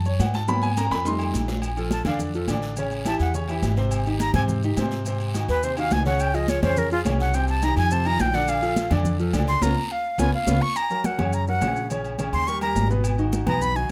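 Lively and sunny, this Afro-Cuban jazz excerpt moves at a brisk 210 BPM in straight 4/4. A smooth, vintage-toned grand piano takes a short solo at the start before a drum fill leads in the breathy, reedy concert flute at 1.6 seconds, its crisp attack and vibrato carrying the melody up front over a woody, growly pizzicato upright bass. High-tuned congas and grainy maracas sit close and dry, a raspy guiro drops out at 10.5 seconds, and ringing timbales and agogo bells sound from a distant large room, with a band accent and a second fill setting up the move to F# major at 10.8 seconds.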